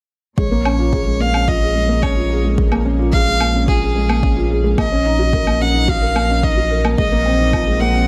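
An earthy, up-front solo violin carries the melody in this moving, cinematic piano-and-strings electronica fragment, over a felt-muted upright piano riff with audible action noise, a very quiet period-style string section holding reedy sustained chords, a round sine sub bass with sidechain pumping, and an overdriven electronic kick and woodblock re-recorded in a small room, the woodblock joining at 0.7 s.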